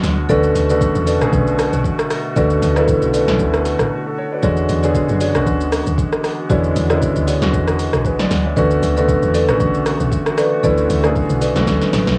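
A present, polished grand piano sits up front in this deep, soulful amapiano excerpt at 116 BPM in 4/4, playing accompaniment in B dorian with a 16th-note swing over a Bm7 to E13 and back to Bm7 progression. Underneath, a round, dark log drum bass with a fast attack and decaying FM tone carries the low end, while an electronic, layered deep house kit of kick, punchy snare, rim click, hi-hat and shaker pushes forward with overdriven grit. A distant woodwind section holds soft-attack sustained chords with light vibrato in the background, its sound pumping under sidechain compression. A marimba played with medium mallets adds stabs from 0.3 to 11.7 seconds, trailed by analog delay. A brief break arrives at 3.9 seconds, and a drum fill closes the passage at 11.7 seconds, all within a small-room, cassette-recorded home sound touched by light reverb.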